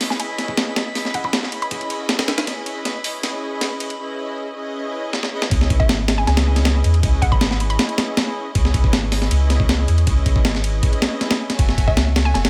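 Nostalgic and raw, this drum and bass cut with jungle roots moves at 158 BPM in C# minor, taken from a longer piece. A rich, smooth studio string section holds sustained chords throughout, moving from C#m7 to F#m7 near the end, while a gritty, compressed breakbeat kit sits up front with a thumpy kick, medium-tuned snare, hi-hats and ride, all filtered to trim the low end. A calm, glassy texture of drifting overtones floats in the background with chorus and its own reverb until 4.0 seconds, and a hollow, bouncy square-wave pluck flickers through in short phrases, its detuned tone treated with chorus and dub echo. The opening build-up carries drum fills before the drop at 5.5 seconds, where a soft, round dub sub bass enters up front and anchors the rest of the passage. A light reverb gives the whole mix a modest sense of space.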